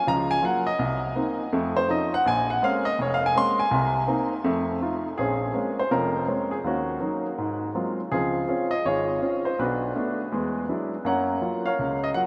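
Jazz in Bb minor at a swinging 164 BPM, this smoky, moody excerpt features a solo grand piano, warm, polished and up front with a touch of analog delay, ranging from F1 to C6 over rich chords like Gbmaj7, Bbm9 and Ab13, all bathed in a huge, dreamy ambient reverb.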